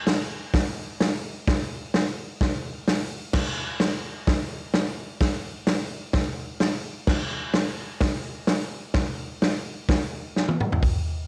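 A straight 4/4 rock beat drives along at 128 BPM, rowdy and swaggering from the moment the vintage drum kit enters at 0.1 seconds. This short excerpt, cut from a longer piece, is a single section carried entirely by the acoustic kit: kick drum, snare, hi-hat, toms and crash cymbal. The kick is punchy, the snare sits at a medium tuning, and the cymbals are dark, all placed up front in the mix. Captured at home on cassette with little reverb, the kit has a natural feel and a rolled-off top that gives it a tape-worn character. A drum fill arrives at 10.3 seconds, closing the passage just before the kit stops at 10.9 seconds.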